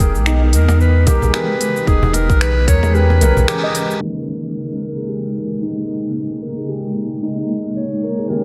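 Meditative and warm, this organic downtempo excerpt moves at 112 BPM in 4/4 with a gentle sixteenth-note swing, set in Eb phrygian dominant. A clear, softly attacked clarinet carries the melody in a classical style with delay, floating over a cloudy, blurred granular pad that holds sustained chords with sidechain pumping. A ringing stainless-steel handpan plays arpeggios through vintage 12-bit grit, a low-pass filter and tape echo, and it gets a filter sweep from 4.0 seconds. Underneath, a deep, round sine sub bass sits up front until 3.5 seconds, joined by a tight, tape-warm electronic kick, a filtered kit of cabasa, finger snaps and smooth hats, and a very quiet, woody cajon, with the kick dropping out at 2.9 seconds and the band hitting an accent at 3.5 seconds. In the second half a felt-muted upright piano enters with soft, intimate accompaniment and audible action noise as the harmony shifts from E6 to Eb7sus4. 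The whole mix is dreamy and soaked in a huge ambient reverb with a low-pass filter.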